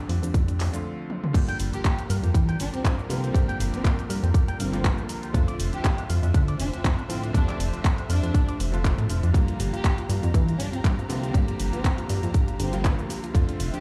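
Swung sixteenths at 120 BPM in 4/4 drive this groovy, sensual nu-disco passage, where a punchy electronic kick and a pop kit of handclaps, hi-hat, shaker, crash and toms sit under a glossy chorused synth bass and clear, clangy electric grand piano accompaniment, while a dark, round pluck arpeggio with tape echo and sidechain pumping opens the track and returns at 9.3 s; after a brief break and drum fill, the drop at 1.3 s brings in lush, pumping background strings and a twangy envelope-filtered guitar riff that stops at 9.3 s, followed at 1.7 s by an expressive violin-section melody with portamento and tape echo, the mix set in a large studio reverb.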